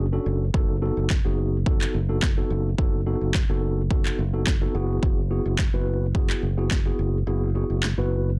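An overdriven deep house drum kit stands up front in this dance-pop fragment, its deep kick, punchy snare and handclaps arriving at 0.5 s, with the kick falling silent at 7.3 s. Beneath it a fingered electric bass holds an amped, direct F#1 with sidechain pumping, while a mellow, clean tine electric piano heard through its built-in speakers moves from Dmaj7/F# to B7/F# and Eadd9/F#. The dry, dense and heavily limited master lends the bittersweet harmony a confident edge.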